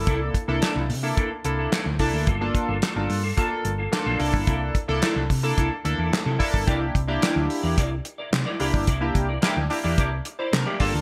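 A bright, 1980s-style digital production with light small-room reverb frames this short cut of danceable, late-night boogie funk at 109 BPM in a straight 4/4, moving from C13 to Gm9 and back before settling on C9 when a second section arrives at 6.7 seconds. A glossy, retro chorused polysynth sits up front with sustained pulse-wave and sawtooth chords, evolving pulse-width modulation and filter sweeps, over a dark, round, amped hollow-body fingered bass. A clean, picked semi-hollow guitar riff with ensemble chorus sits lower in the mix, while a dry, damped 70s kit with a tight kick, medium-tuned snare, hi-hat and handclaps punches forward through gated reverb.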